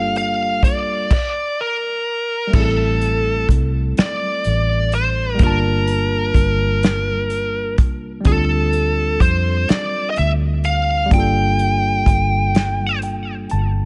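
A slow, straight six-eight R&B groove carries this sultry, late-night piece. A distorted, bluesy lead guitar sits up front with delay, soloing from the start through 2.5 seconds before carrying the melody over chords moving from Gm9 through Am7, Gm7 and Dm7. A worn, slightly out-of-tune tine electric piano, lightly overdriven through a combo amp, plays accompaniment and adds a fill at 12.5 seconds, while a round, punchy, foam-muted fingered bass and a tight, small-room soul drum kit with smooth, dark cymbals hold the bottom in a dry, close-sounding mix.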